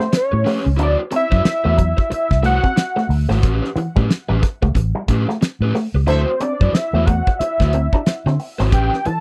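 A strutting funk groove at 91 BPM in 4/4 rides a 60% swing on the sixteenths, driven by a damped 70s drum kit whose fat snare, tight kick and hi-hat sit up front with a dry, airy polish. A vintage muted fingered electric bass enters at 0.3 seconds, dark, round and punchy beneath chords that move between A9 and D9. Over this, a fat analog lead carries the melody with a detuned sawtooth edge, a sub octave, ring modulation and vibrato, colored by chorus and tape echo. An electric guitar with an envelope filter plays a bright, twangy, compressed riff, while a raw garage guitar adds overdriven, picked accompaniment. At 6.1 seconds a band accent begins, marked by a brief, distant, punchy entry from a warm, roomy horn section doubled in octaves, in a close, dry 1970s-style studio sound cut from a longer piece.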